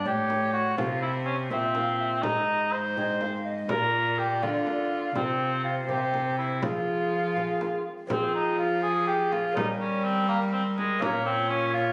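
This renaissance-style consort dance in a lilting 6/8 has a solemn, courtly character, and it is cut from a longer piece. An alto recorder carries the melody with an airy, wooden voice, tongued notes with a clear chiff and expressive vibrato. A cor anglais plays the second line with a light vibrato and a distant, roomy shading, while a single bowed cello supplies the bass with a rich gut-string tone and a reedy edge, close and up front. A fingerpicked lute joins at 0.1 s with delicate double strings in the background, and a small, bright frame drum adds close, dry percussion. A new section takes over from 8.1 s to the close, and the frame drum drops out at 11.2 s. The ensemble sits in a moderate stone room, heard through a phone recording with added studio reverb and compression.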